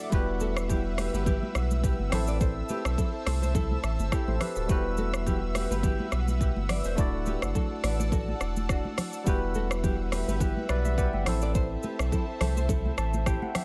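A saturated sub bass sits up front with a deep, thick tone and fast attack, holding sustained low notes beneath a hypnotic, smooth afrobeats groove at 105 BPM in E minor. The electronic afro-pop drum kit shares the foreground, its deep kick, metallic hi-hats, rim clicks and shaker carrying a light 16th-note swing. Over them, a bright, barky tine electric piano plays clean, direct accompaniment and adds a fill from 12.7 seconds to the close. A small, fingerpicked nylon-string guitar repeats a riff through a digital delay, while soft-handed, high-tuned congas with a damped, thick-skinned sound stay in the background. An airy, breathy pad with a warbling, detuned vintage character and chorus holds slow-attack chords, cycling through Emadd9, Am and Dadd9 in this excerpt from a longer piece, all set in a digital ambience.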